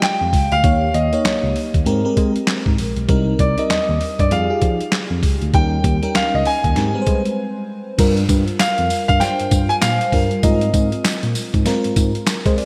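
A punchy, bouncy new jack swing groove opens with a gritty, pitched-down sampler-style drum kit up front, its thumpy kick, snare, hi-hat, handclaps, tambourine and crash wrapped in gated reverb and swung sixteenths. A concert grand piano with deep bass carries the melody through digital delay, while a lush, dreamy FM electric piano with a soft pad layer, shimmering with chorus and phaser, supplies the chords and a worn, slightly out-of-tune tine electric piano takes the bass line from 0.2 seconds. After a brief break at 7.4 seconds, the passage moves into a new section at 8.0 seconds, all set in a bright 1980s-style production with a lush hall reverb.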